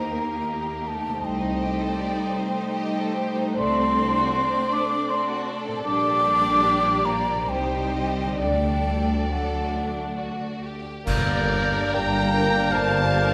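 A melancholic, elegiac slow movement for symphony orchestra in a lilting triple metre with a free, rubato feel, this is cut from a longer piece. It opens with a dark, distant violin section carrying the melody, while an airy, hollow flute floats a second line above it and a focused, lush second violin section adds another line beneath. Smooth, rich violas supply accompaniment, a ringing harp spins arpeggios in the background, and cellos and double basses anchor the bass together, the basses sliding with expressive portamento. At 11.1 seconds the full band lands an accent as a bright, present oboe, a soft-edged bassoon, a very quiet trombone section, a punchy tuba, and clash cymbals with dark tones and concert bass drum enter together. A mellow French horn section adds tight sustained chords from 12.0 seconds, and the whole passage sits in the generous, wet reverb of a scoring stage.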